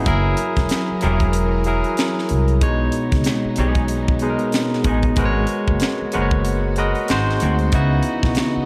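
A dreamy, reverb-soaked mix frames this sensual, soulful neo-soul R&B excerpt at 94 BPM in B major, where a bright, barky tine electric piano, a woody, thumpy pizzicato upright bass and a tight funk drum kit with high-tuned snare, hi-hat and finger snaps sit up front, while a veiled, con sordino string section holds very quiet sustained chords and a slightly broken-up, lo-fi electric guitar through a small old amp adds a faint second line from 0.7 s, over chords moving from F#9 through B69 and G#m11 to G#7 and C#m11.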